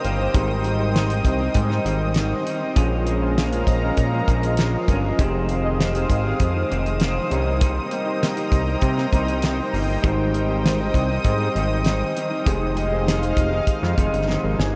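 A fat, detuned sawtooth analog bass with a filter sweep sits up front beside a dry, damped 70s drum kit with a tight kick and fat snare in this hazy, mellow indie and bedroom pop excerpt in F minor at 99 BPM, where a bright, twangy, slightly broken-up electric guitar with analog chorus and warbly pitch drift, nostalgic lo-fi synth keys with cassette-tape wobble, and a lush, slow-attack unison pad drift through Abmaj7, Bbm7, Fm7 and Cm7 chords in a dreamy mix soaked in huge ambient reverb, until a drum fill arrives at 14.3 seconds.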